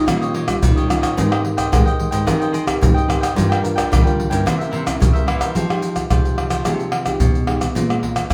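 The recording captures a band playing live together in one large studio, bathed in a wet reverb, with the percussion sitting up front. This short cut from a longer samba and choro piece in a straight four has a nostalgic, bittersweet mood, moving through rich chords such as Eb9, Abmaj9 and C7b9 before turning to Fm9 and Bbm7 in its second passage from 5.6 seconds. A crisp, picked cavaquinho sits high in the accompaniment and drops out at 5.5 seconds, while a fingerpicked nylon-string guitar with a classical tone fills out the middle harmonies. A second nylon-string guitar carries the bass line with a thumb-plucked, warm sound, and small finger squeaks give it a close, human touch. Maracas, deep surdo, pandeiro and tamborim, played with soft hands, give the groove an acoustic, roomy lift.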